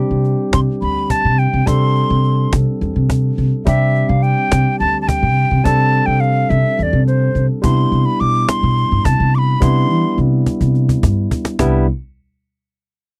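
A bright wooden flute leads with an airy, tongued straight tone over a thumpy pizzicato upright bass, a barky tine electric piano through a combo amp, and a snappy cajon in this bright, driving progressive instrumental in 7/8 at 212 BPM in C major, dry and close like a 1970s studio recording, moving from a Gsus4 to a Cmaj9 at 7.6 seconds, with the kick and snare dropping out from 6.5 seconds and a drum fill at 10.5 seconds in this excerpt from a longer piece.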